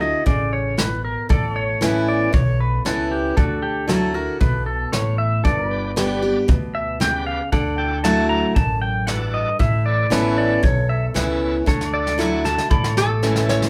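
A bright, twangy pedal steel guitar takes the solo throughout this heartfelt, nostalgic honky-tonk and classic country excerpt in D major at 116 BPM, its clean, compressed slide lines full of volume swells riding up front while a second, mellower pedal steel holds sustained chords in the background. A full-bodied dreadnought acoustic guitar, a woody, thumpy gut-string upright bass and a soft brush kit with a punchy kick carry the straight 4/4 feel, joined at 5.7 seconds by a shouting, lightly overdriven tonewheel organ on a slow rotary speaker. A drum fill begins at 11.7 seconds, and a metallic, nasal lap resonator guitar slides in with the melody at 13.0 seconds, all in the natural ambience of a band playing live in one small room.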